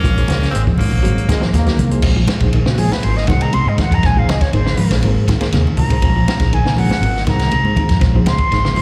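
This short excerpt sounds like a live gig heard through the venue's PA, with small room ambience and recital hall reverb around a defiant, intense afrobeat groove in Bb minor at 120 BPM in a straight 4/4. A raspy, gritty tenor saxophone carries the opening melody with light vibrato, joined by a brilliant, distant trumpet on a second line, both with slapback echo, until they drop out at 1.5 seconds. A dark, punchy trombone section briefly adds its own second line, and then a mellow, airy concert flute takes over as the soloist from 2.7 seconds, distant and soft in attack with a straight tone. Underneath, a compact cocktail drum kit sits up front with a high-tuned snare and punchy kick, while bright, thin-skinned congas stay close and dry in the background and a fingered electric bass anchors the low end. Two electric guitars, one twangy and at the edge of break-up playing arpeggios through spring reverb, the other dark and clean playing stabs, sit in the background alongside a worn, reedy electric piano with fast tremolo, all cycling between Bbm9 and Ab13.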